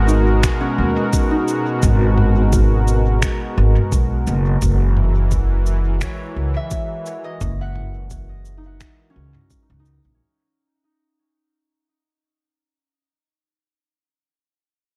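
A lightly reverberant, deep and meditative ambient dub excerpt at 86 BPM, where a smooth, detuned sawtooth pad with chorus, tremolo and gritty 12-bit sampler colour holds sustained chords moving from G#m9 to F#9 while a concert harp rings out fingerpicked arpeggios through tape echo, carrying on alone until 12.5 seconds. Up front, a woody, gut-strung pizzicato upright bass anchors the low end, joined by a muffled, pitched-down kick with overdrive and a tape-toned electronic kit of cabasa, finger snaps and toms sent through dub echo, all with a gentle 16th-note swing. The piece fades out from 2.8 to 10.2 seconds.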